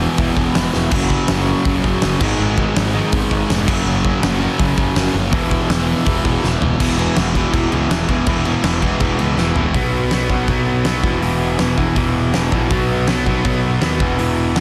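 Three driven guitars and a growly, fuzzed bass crash straight into an upbeat, rebellious punk rock riff at 163 BPM: a bright cranked stack guitar up front, with a dark, double-tracked fuzz guitar and a compressed overdriven guitar behind it. A big, dark-toned rock kit with a fat snare and punchy kick joins at 0.2 seconds, dropping in fills as the chords move from E through F#, G#m and F#. The fuzz guitar falls away at 9.7 seconds, where the riff shifts to B5 and E5 power chords under a dense, heavily limited, dry mix.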